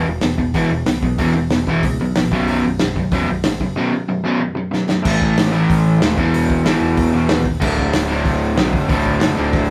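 Rebellious and rowdy, this short punk rock cut charges along at 187 BPM in a straight 4/4, with two overdriven guitars, one a compressed electric and the other an up-front, hollow-bodied semi-hollow, hammering out a picked riff over power chords moving from E5 through B5, A5 and back to E5 before landing on D. A bright, growly picked electric bass adds punch underneath, while a loose indie drum kit, played up front with a punchy kick, medium-tuned snare, hi-hat and crash, enters at 0.2 seconds. A drum fill at 4.7 seconds kicks the band into a new section at 5.1 seconds, all captured in a rough rehearsal-room recording with moderate reverb.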